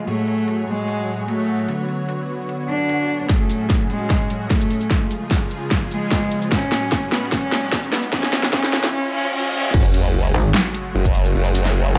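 Half-time 4/4 heavy wobble dubstep, chaotic and menacing, opens on huge, lush supersaw chords with vintage 12-bit grit and sidechain pumping under a filter sweep, as a woody, distant bowed cello with vibrato carries a dark melody through dub echo, while a punchy electronic kick and an up-front, tape-warm kit with a massive snare and metallic hats drive the build-up over background swells, risers, a reverse cymbal and a sub drop, until the drop at 9.7 s unleashes a saturated formant-sweep wobble bass, joined at 10.3 s by an aggressive FM wobble bass with a metallic edge.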